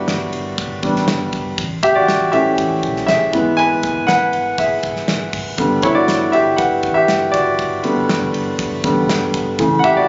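Piano-driven pop with a hopeful, uplifting mood, moving at 120 BPM in a straight 4/4 and tuned slightly below standard pitch, with A at 435 Hz. A baby grand piano carries the excerpt up front, warm and polished, spanning C#3 to G#5 and featured as a solo from start to finish while it moves through G, A, E/G# and back to G at 5.6 seconds. Beneath it sits a deep, full sub bass with an added octave, a sine tone with a fast attack and sustained notes, kept in the background between G1 and B1. A modern acoustic drum kit enters at 0.1 seconds with a punchy kick, a medium-tuned snare, hi-hat and ride cymbal, its sound airy yet tidy and set in a small room. The whole thing has the character of a phone recording made in the room, with club reverb, compression and a dulled top end that gives it a slightly muffled, cut-from-a-longer-piece feel.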